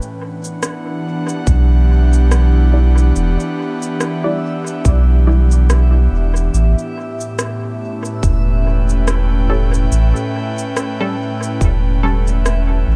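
An echo-heavy digital ambience surrounds this meditative, deep slice of ambient dub, cut from a longer piece and moving at an unhurried 71 BPM in 4/4 with a gentle 16th-note swing in E dorian. An airy, breathy pad with a soft noise layer and chorus holds sustained chords from the very start, joined at once by an overdriven electronic shaker and rim click thrown into dub echo. In the background, a reversed, granular texture swells in dreamily from 0.5 seconds, bathed in its own reverb. At 1.5 seconds a round, sine-like sub bass arrives up front alongside a tight, overdriven electronic kick that carries the sound of a large room. From 2.7 seconds a muted, filter-plucked sawtooth chord stab adds decaying hits treated with lush chorus and dub echo, as the harmony moves from Em7 to A7 halfway through.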